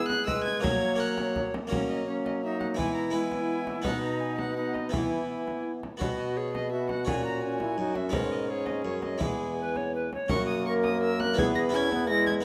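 Classical, renaissance-style consort dance in a stately, courtly triple time, cut from a longer piece, in which a gut-string violin with light vibrato carries the melody over an airy, chiffy tenor recorder on the second line, a clear trombone and a round, plucked Flemish-style harpsichord in accompaniment, a deep frame drum played with soft hands, and a warm bassoon taking the bass from 0.3 s, all heard through close, detailed microphones in a moderate recital-hall reverb.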